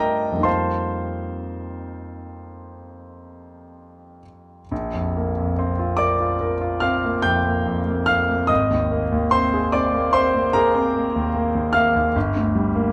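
A clear, intimate grand piano opens this luminous, dreamy impressionist solo piece in Bb major, moving in a slow, rubato 9/8 at roughly 41-51 BPM by the dotted quarter and ranging from G1 to G6. Its harmony drifts from an F9sus4 into a new passage at 4.7 seconds built on Bbadd9, then Abadd9, before settling on Gm near 12.2 seconds. The piano sits up front with a natural tone and audible action noise, framed by light reverb in a dark production, and the recording is cut from a longer work.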